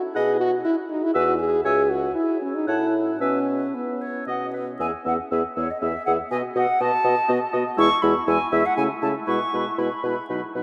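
Bathed in a vast, echoing cathedral reverb, this cheerful, lively fragment of a classical-period wind-quintet movement in triple time, played with rubato, sets a pure, hollow silver flute with a crisp attack on the melody over a light-vibrato oboe on the second line, a mellow close-miked clarinet and a present, warm French horn in accompaniment, and a dark bassoon on the bass, with the full quintet sounding by 0.2 seconds and a second section arriving at 4.8 seconds.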